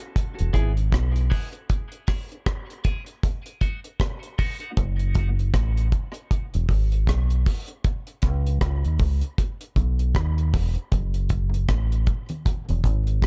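Meditative and deep, this dub reggae excerpt moves at 78 BPM in F# dorian with a swung sixteenth-note feel, built on an up-front, dark, round fingered electric bass and a dry, up-front drum kit of hi-hat, tight kick and rim click in a small, echo-heavy room. A bright, twangy, clean electric guitar, picked and compressed, plays accompaniment through a high-pass filter and tape echo only until 4.7 seconds, while a break runs to 10.9 seconds over chords moving from E and C#m through B to F#m. At 10.9 seconds very quiet, low-tuned congas with a thick-skinned, soft-handed tone join near the end.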